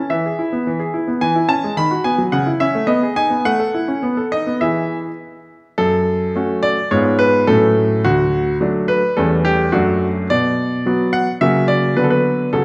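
A wet recital hall reverb surrounds a clear, natural baby grand piano that sits up front, playing alone for the full 12.6 seconds of this piece cut from a longer work. It is a graceful, cheerful classical-period sonatina in 2/4 at 107 BPM with a straight feel, opening in E major with a cadence back to E before turning to F# minor at 5.8 seconds. The piano spans D2 to B5, and its chords move through bass-inverted harmonies and seventh chords to settle on Bm/D.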